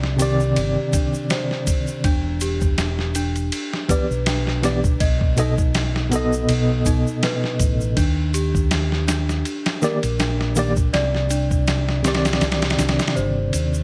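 A dry mix frames this brooding, melancholic trip hop piece at 81 BPM in 4/4, with a lightly swung sixteenth feel over Cmadd9, Em7, B7 and D#maj7 chords. Up-front, gritty sampler-style drums with a thumpy kick, medium-tuned snare and ride cymbal sit over a round, punchy fingered electric bass. A clean tine electric piano with tremolo and tape echo supplies accompaniment, and a quiet, close egg shaker joins from 0.2 s, while a delicate, bell-like celesta plays arpeggios through tape echo on top throughout; the kick drops out at 12.4 s.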